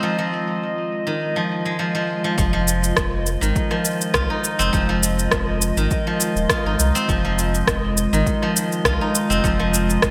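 Bathed in a lush hall reverb with a bright 1980s-style digital sheen, this meditative, earthy organic downtempo piece in F minor at 102 BPM opens on an Fm7 chord, with a warbling, nostalgic tape-like pad under a filter sweep, silvery zither arpeggios played with fingerpicks and ringing up front through delay, and a glassy, drifting harmonics texture in the background, before a round sine sub bass with sidechain pumping, a punchy layered electronic kick, and an up-front electronic shaker and rim click with gated reverb enter at 2.4 seconds.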